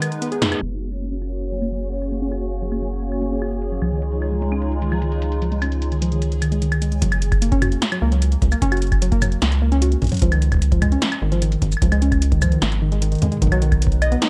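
IDM with a wistful, glitchy mood, moving at 150 BPM in a straight 4/4 in F# major, cut from a longer piece. An analog drum machine runs throughout with a punchy snare, metallic hats, claves, shaker and toms, all filtered dark and touched by tape echo. A warbly, dusty pluck spins lo-fi arpeggios through chorus and cassette grit, with a filter sweep on it from 0.6 to 7.0 seconds. A rubbery, bouncy square bass sits up front, while a hollow, flute-like pad holds mellow sustained chords under ensemble chorus, and a reversed, dreamy granular texture glimmers in the background. At 7.0 seconds the pad and texture drop away as a deep analog kick drum arrives, and both return briefly near the end over a B chord. The production is dark, warm and lightly reverberant.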